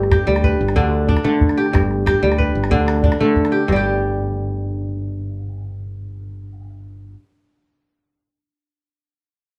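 A ringing, crisp kora sits up front, its fingerpicked arpeggios spanning G2 to B4 across the whole 7.3-second passage from a longer piece of joyful West African string music. Beneath it, a growly, punchy fretless electric bass, also prominent, holds down the low end. A small calabash, heard close, adds percussion through the opening section and falls silent at 3.8 seconds. The pulse moves at 123 BPM in a straight 12/8, and the harmony alternates between G and D5 before the chord changes stop at 3.7 seconds as a second section begins. The band plays live together in a moderately reverberant studio, and the recording carries some lossy compression artefacts.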